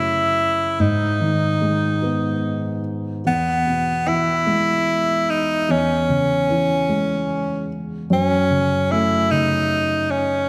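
An edgy tenor saxophone and a dark grand piano open together in this heartfelt, romantic pop piece, a slow 6/8 at 49 BPM moving through F#m, G#m, E and C#m/E before returning to F#m at 8.1 seconds. Up front, the saxophone carries the melody as a forceful, jazz-style solo with punchy, scooped notes and a slapback echo. Beneath it, the mellow, intimate piano accompaniment has audible action noise and a vintage character, and the whole is set in a wet concert hall with a warm production.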